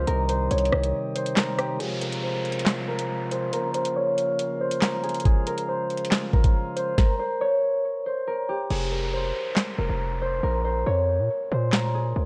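Tense and dark, this half-time drill cut in F minor at 139 BPM sets a mellow, ringing concert harp melody over bright organ flute chords with a chiffy edge, while a knocking, sampler-gritty drill kit drives throughout, a punchy, heavy 808 bass drops out at a brief break and returns at 8.7 seconds with muted hi-hats and a downlifter, all wrapped in warbling, worn cassette-tape drift.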